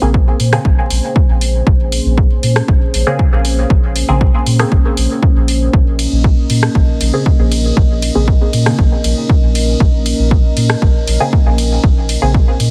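Deep and hypnotic, this dub techno passage, cut from a longer piece, rests on a single Bbm9 chord: a dark sawtooth pad with a sub octave and slow attack sustains under chorus and phaser, while muted, detuned chord stabs pluck through a filter and decay into dub echo. Both breathe with sidechain pumping alongside a round, mellow sub bass, as an up-front, tape-warm electronic kick sits at the front and a punchy analog drum machine adds hi-hat, ride cymbal and rim clicks from 0.4 s. The dense, heavily limited master sits in digital ambience beneath a layer of vinyl crackle.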